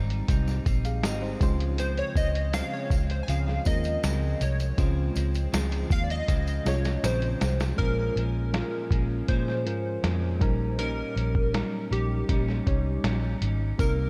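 This dreamy, laid-back indie and bedroom pop piece moves at 80 BPM in Db lydian, cut from a longer track. A muffled, thumpy sampler-style drum kit and a dark, foam-muted fingered bass sit up front, beneath twangy clean electric guitar drenched in lush chorus and warbly pitch drift, and a reedy, worn electric piano with cassette-tape character. A detuned, wave-folded analog synth with chorus and delay carries the melody from 1.8 seconds, taking a solo through the first section, which closes with a drum fill, before a shift to Bbm7 at 7.8 seconds, while a jingly tambourine sits in the background under light reverb.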